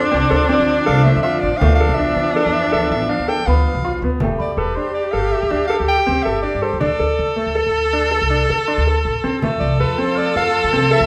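A breathy, whispered soprano saxophone carries the melody from the start, joined by an intimate bowed viola second line played sul tasto, a woody pizzicato upright bass, and a delicate, slightly out-of-tune celesta in the background, with a clear baby grand piano adding arpeggios and a small, very quiet frame drum following just after. This hypnotic, pensive contemporary chamber piece moves in 7/4, while a lush string section holds sustained chords until 4.2 seconds, falls away, and returns at 9.4 seconds. Moderate recital hall reverb surrounds the ensemble in this short excerpt cut from a longer work.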